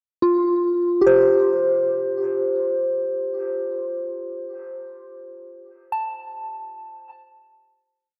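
Free of any steady pulse, this brief ambient piece floats in open time, a warm and weightless moment lasting just over eight seconds. Its sole voice is a soft FM synth bell, pure and mellow, sitting up front and moving between F4 and A5 over a single Fadd9 harmony. Each tone strikes with a fast attack and then decays, and three slow loops of unequal length drift against one another. Chorus, phaser and a diffuse ambient delay colour the bell, while a lush hall reverb with a 2.9 s tail surrounds the whole sound in a wet, spacious glow. The piece begins fading at 5.3 seconds and is gone by 8.2 seconds.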